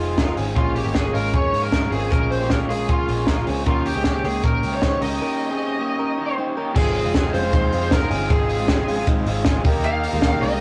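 A dark, distorted lead guitar sings the melody over a buzzy combo organ with light vibrato, a bright, crunchy overdriven guitar with spring reverb, picked arpeggios on a clean, compressed direct-recorded electric guitar and a round, foam-muted vintage bass, with a compact cocktail drum kit (punchy kick, high-tuned snare, hi-hat, ride and crash, up front) joining at 0.2 seconds, in this nostalgic, bright slice of jangly indie pop at 155 BPM in Ab major, moving from Fm7 through Bbm7 and Eb7 to a break at 5.2 seconds before settling on Ab6 at 6.8 seconds, all captured in a rough rehearsal-room recording with small-room reverb and warm saturation.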